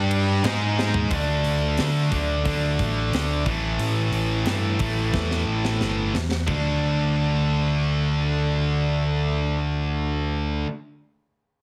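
Bright, high-gain distorted guitars open this aggressive, menacing hard rock excerpt at 89 BPM: one sits up front, and a double-tracked one in the background stops at 1.1 s. A tight distorted guitar riff and a growly, overdriven picked bass up front play alongside them, while a tight metal drum kit with a high-tuned snare and saturated, gritty tone under a rolled-off top plays a straight 4/4 with two fills before stopping at 6.6 s. Light small-room reverb and a heavily compressed, radio-like sound frame the harmony, which moves through G#5, D5 and A5.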